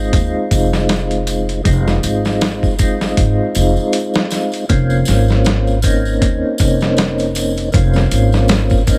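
A swung sixteenth-note groove from a gritty, overdriven sampler-style drum kit with a thumpy kick, medium-tuned snare and hi-hat drives this brooding, hypnotic trip hop excerpt. A faint tambourine rides underneath, a woody pizzicato upright bass sits up front, and a mellow, dark tonewheel organ with percussive attack, slow rotary speaker, tremolo and tape echo moves from Fm7 to Bbmadd9/F at 4.7 seconds, all in a dry, close-sounding room.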